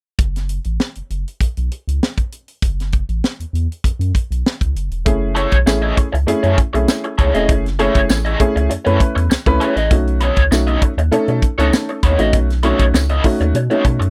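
A dry, close recording in a 1970s studio style gives this driving funk excerpt an up-front, intimate feel, cut from a longer piece at 99 BPM in a straight 4/4 and F# dorian. From the start, a tight, acoustic drum kit with a high-tuned snare and firm kick sits in a small natural room, while a round, deep analog bass with a fast attack, sustained notes and a filter sweep holds down the low end. At 5.1 seconds the harmony settles on F#m9 as a dark, woody upright piano enters with short, boxy stabs, its slightly detuned, worn tone carrying audible action noise. Moments later a raw garage guitar joins in accompaniment, picked and overdriven, colored by wah and harmonic tremolo, and a jingly tambourine follows softly. The chord moves to B9 at 9.9 seconds, keeping the groove funky and propulsive until the excerpt ends.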